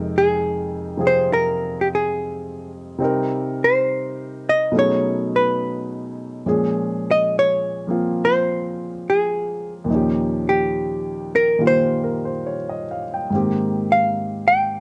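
A jazz ballad in F minor, this smoky, wistful piece moves at an unhurried 70 BPM in 4/4 with a swung eighth-note feel. A concert grand piano carries the accompaniment from the very start, its intimate, natural tone reaching down into deep bass, with the noise of its action audible up close. A clean, dark hollow-body electric guitar enters at 0.2 seconds to carry the melody, its picked notes sitting up front and a touch louder than the piano. The harmony drifts through rich extended chords, opening on Fm11 and passing through Cm7, B13, Bbm9 and Eb13 before settling on Abmaj9 at 13.3 seconds. Recorded with close, detailed microphones and little reverb, the sound is dry and immediate, and the passage is cut from a longer piece, ending at 14.8 seconds.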